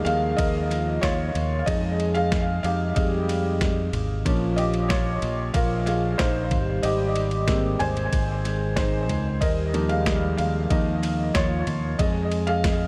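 A steady, straight 4/4 pulse at 93 BPM anchors this uplifting, hopeful piano-driven pop excerpt in Ab major, cut from a longer piece. A gritty, pitched-down boom bap sampler-style drum kit sits up front with a thumpy kick, a high-tuned snare, ride cymbal and toms, its compressed sound carrying a tape-like glow. Beneath it, a fingered electric bass sounds bright and punchy, direct and amped, holding the low end from Ab1 to F2. The felt-muted upright piano takes the lead as a soft, intimate solo across the whole 12.9 seconds, its thin felt tone placed close and trailed by dub echo. A mellow French horn section, tight and classical in style, supplies a second line in the background, while the chords move from Ebsus2 through Fm7, Bbm and Abmaj7 before circling back, all within an echo-heavy mix of light reverb and digital ambience.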